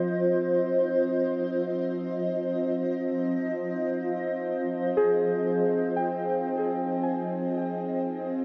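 Bathed in a huge, echoing reverb, this melancholic, reflective ambient fragment in free time rests on a single Fm7 chord, with a cloudy, blurred granular pad sustaining chords up front, muted felt-like synth keys picking out soft, dark arpeggios through chorus and diffuse delay, and a resonant drone with moving overtones sustaining throughout its 8.4 seconds.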